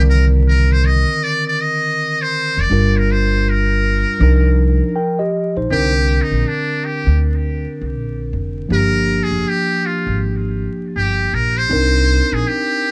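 A buzzy, metal-muted trumpet carries the melody of this cool, nocturnal jazz-hop piece, with a thin tone and light vibrato, and it takes a jazz-style solo from 5.7 seconds to the close at 12.9 seconds. Beneath it, a mellow tine electric piano supplies the accompaniment, clean and heard through its own built-in speakers, moving through minor-ninth, minor-seventh and suspended chords. An acoustic upright bass anchors the low end with woody, dark pizzicato notes on steel strings, and it is the loudest of the three parts before it stops at 12.4 seconds. The unhurried hip hop groove has a lazy sixteenth-note swing. The sound is dry, with little reverb, and a layer of vinyl crackle gives it a dusty, late-night character. The clip is cut from a longer piece.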